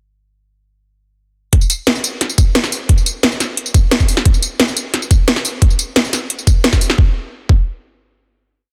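Drum and bass at 176 BPM, tense and aggressive, built entirely from percussion in a dense, heavily limited modern master with light reverb. A knocking, up-front electronic kick enters at 1.5 seconds and carries the broken-beat drop, arriving together with a tight, technical drum kit of cracking snare with soft clipping, metallic hi-hats and tambourine, re-recorded in a small room with a tape-warm edge. The kit stops at 7.0 seconds for a final hit, and the kick rings on until 7.6 seconds.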